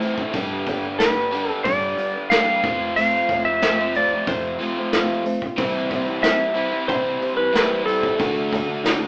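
Brushed drums, a picked steel-string acoustic guitar and an overdriven electric guitar riff all start at once in this open-road folk and heartland rock excerpt, set in a straight 4/4. The drums sit up front with a punchy kick and a medium-tuned snare played with brushes. The acoustic guitar offers a warm, concert-style accompaniment, while the double-tracked, compressed electric guitar adds a bright, overdriven edge. At 0.3 seconds a dark, round hollow-body bass joins from the background, under a progression of Gadd9, F, C and D. At 1.0 seconds a clean lap steel takes the melody up front, twangy and played with fingerpicks and slide, with volume swells. The band sounds as if it is playing live in one stone room with moderate reverb, heard through an AM radio sound.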